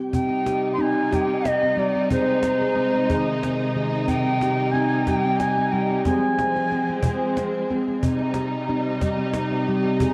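World meditative music in a hypnotic, gentle 6/8 sway, where soft-fingered handpan arpeggios ring up front through shimmer reverb, a breathy, reedy bansuri sings a bright melody with vibrato and tape echo until 7.3 seconds, a lush bowed string section holds smooth sustained chords, and a snappy cajon struck with hard hands sits close, all wrapped in a wet spring reverb with the character of a home cassette recording.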